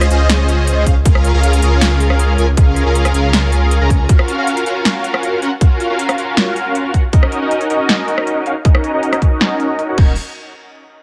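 Future bass with an emotional, dreamy mood, moving in a half-time feel through a short cut from a longer piece. Huge, bright supersaw chords carry the riff from the start, colored by ensemble chorus, cassette tape character, dub echo, sidechain pumping and a low-pass filter that sweeps across the whole passage. A thick, saturated detuned saw bass sits up front beneath them with its own chorus and pumping, then drops away at 4.1 seconds and returns only for a brief moment at the very end. An overdriven big-room dance drum kit supplies a punchy snare, crisp hats, rim clicks and crash cymbals, with its snare, hats and cymbals softened by low-pass filtering, while a hard-clipped electronic kick punches in at 0.9 seconds as the loudest element. The harmony drifts from Dbmaj9 through Bbm7/Db and Gbmaj7 to Ebm7, all set in light reverb and digital ambience.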